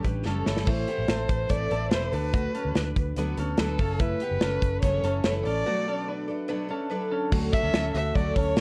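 A straight 4/4 pulse at 144 BPM drives this breezy, nostalgic jangly indie pop excerpt in D major, where a twangy, compressed twelve-string electric guitar plays arpeggios over a shimmering, octave-doubled twelve-string acoustic, both in plate reverb, as a dark, foam-muted fingered bass and an up-front studio drum kit with crash, hi-hat, tight kick and snare support an expressive bowed violin melody with vibrato and portamento entering at 0.3 s alongside a drum fill, with a break from 5.7 to 7.3 s and the whole recording carrying a worn, warbling cassette-tape pitch drift.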